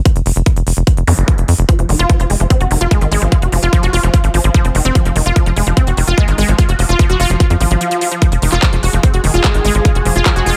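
A punchy, up-front electronic kick drives this hypnotic psychedelic trance excerpt at 147 BPM in F phrygian, joined by a crisp-hatted dance kit with handclaps, a tight, nasal sawtooth sequencer bass, a lush detuned unison pluck riff with delay and sidechain pumping from 1.7 s, an electronic zap at 1.1 s and a swell around a brief break at 7.8 s, and a mellow, warbling wavetable pad with chorus drifting in the background from 8.7 s.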